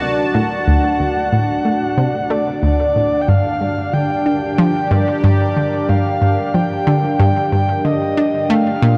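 Ambient, sequencer-driven space music in G minor at 92 BPM, expansive and cosmic, where a round, detuned analog pluck riff with a fast attack sits up front beneath an evolving, full-bodied resonant pad holding sustained chords and a breathy, warbling flute-like synth lead with vibrato carrying the melody, all three parts treated with chorus and the pluck and lead with delay, as a filter sweep moves over the arpeggio sound and the harmony passes from D to Gm at 3.3 seconds, bathed in a huge ambient reverb within a dark, warm production.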